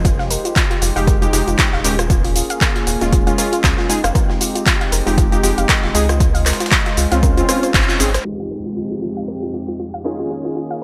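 Swung sixteenths drive this hypnotic, late-night deep house cut at 117 BPM in 4/4 and F minor, anchored by an overdriven, layered electronic kick up front and a punchy analog drum machine carrying cabasa, handclaps, hi-hat and rim click through gated reverb in a small room. Underneath sits a very quiet, gritty breakbeat sampler-style kit of hi-hat and snare, while a rubbery square-wave bass with tube saturation bounces with a hollow, nasal tone, pumping against the kick. A smooth, warbling vintage pad holds sustained chords moving through Fm9, Eb9sus4 and Dbmaj7, with chorus and 12-bit sampler grit, as a soft, round pluck spins arpeggios through digital delay. From 1.0 s, full-bodied detuned sawtooth key stabs join with chorus, a low-pass filter and delay. A band accent lands at 7.7 s, then the kick, bass and breakbeat kit drop away as a filter sweep and a background downlifter carry the closing section from 8.3 s, all within a bright, 1980s-style digital production with light ambience.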